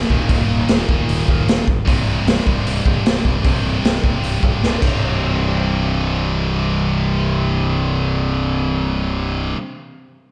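Powerful and anthemic, this hard rock excerpt pairs a bright, overdriven electric guitar riff with a scooped high-gain guitar, both picked and touched by slapback echo, over an up-front fuzz fingered bass, while a gritty, saturated garage drum kit with a punchy kick and a pumping small-room sound plays a fill at 4.6 s and drops out at 4.9 s, leaving the guitars and bass in a big arena sound with concert hall reverb.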